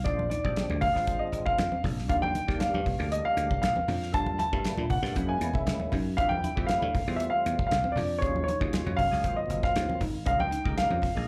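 A dark, mellow grand piano carries the melody up front, its long sustain colored by a slapback echo as it moves between Db5 and A5. This is intense, driving electric jazz fusion at 118 BPM in a straight 4/4, cut from a longer piece and heard as a live gig through the venue's PA with light club reverb. Underneath, a fat, percussive tonewheel organ supplies accompaniment with key click, third harmonic percussion, chorus vibrato and a slow rotary speaker. A growly, punchy thumbed slap bass sits dry and direct, while a damped 70s kit with a tight kick and medium-tuned snare stays up front beside ringing, low-tuned congas struck with hard hands. In the background, a twangy, compressed clean electric guitar adds stabs drenched in lush chorus, all over rich extended harmony that runs from Bb9 through Gm9, Ebm11 and Ab13 before landing on Db69 at 10.3 seconds.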